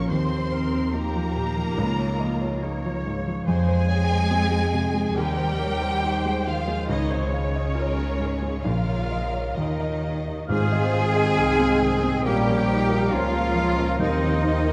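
A felt-muted upright piano, soft and intimate with audible action noise, carries the accompaniment of this hopeful, moving cinematic score excerpt in Ab major, drifting rubato at about 69 BPM as distant, vibrato-rich violins sing the melody over a second violin line, background violas, a ringing thumb-plucked harp, focused cellos and smooth double basses. At 10.5 s the texture opens up as an airy flute, a background clarinet and a punchy, roomy oboe add lines, a dark French horn section holds sustained chords, and very quiet hard-mallet timpani join. The whole sits in a wet scoring-stage reverb with a dark production.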